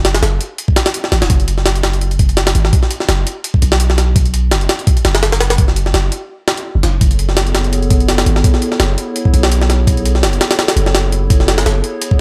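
A gritty, compressed jungle sampler-style drum kit sits up front from the first second, its pitched-up hits built around a thumpy kick, a high-tuned snare and hi-hat, with a tape-warmed character and the air of a large room around them. This short cut from a longer drum and bass piece runs at 168 BPM in 4/4 with a light 16th-note swing, and the mood is frenetic yet atmospheric, in F# minor. Beneath the drums, a deep, mellow 808-style bass holds long sine-like notes in the low register, each with a fast attack that decays away before the bass drops out at 11.8 seconds. At 7.2 seconds a dark, nostalgic lo-fi pad fades in softly behind the other parts, its square and triangle tones warbling through chorus and built-in reverb with a slow attack and long release. The harmony moves from an open start to B5/F# and then settles on F#m11 as the pad arrives. The whole passage is bathed in digital ambience.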